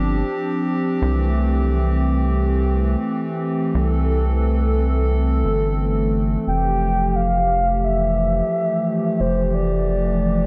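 Playful and intricate, this IDM excerpt is cut from a longer piece and sits in a straight 4/4 feel. A hollow, flute-like pad with a soft attack and chorus sustains chords throughout, its detuned tone sitting dark and up front. Beneath it, a rubbery square-wave bass with a bouncy, resonant filter pluck holds the low end from the opening second. The harmony moves from G7sus4 to C6, then settles on Fmaj9 at 6.5 seconds, when a warbling, nostalgic lead enters high above. That mellow melody carries chorus, tremolo and vibrato, roughened by vintage 12-bit sampler grit, while light reverb lends the whole mix a gentle digital ambience.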